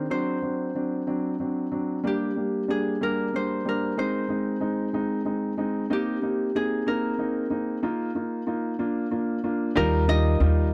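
This six-eight pop ballad moves at a gentle 62 BPM in Eb major, tender and romantic in mood, and is cut from a longer piece. A ringing, fingerpicked Celtic harp carries the melody in a high register, sitting up front over a baby grand piano with a warm, open tone and long sustain that supplies the accompaniment from the start. The harmony travels from D7 through Gm, Ab and Cm7 to a Bbsus4 that settles on Bb, before landing on Ebadd9 at 9.8 seconds. At that moment a woody pizzicato upright bass with steel strings enters on a low Eb, adding weight to the close of the passage. The sound is dry and close, like a 1970s studio recording, touched with light reverb.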